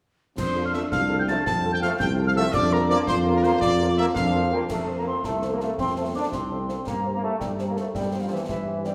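A dark, close-miked tuba sits up front in this spirited, rousing military-style march for wind band, set in 6/8 at 111 BPM in F major, while a mellow trumpet section carries the melody and a hollow wooden piccolo with vibrato adds a pure second line above it. A euphonium with light vibrato supplies a background line until 4.4 s, French horns and sustained trombone chords sound distant and roomy behind them, and concert snare, clash cymbals and bass drum keep the march moving, the cymbals dark in tone. The reverberant recital hall gives this short passage, cut from a longer piece, a rich sense of space.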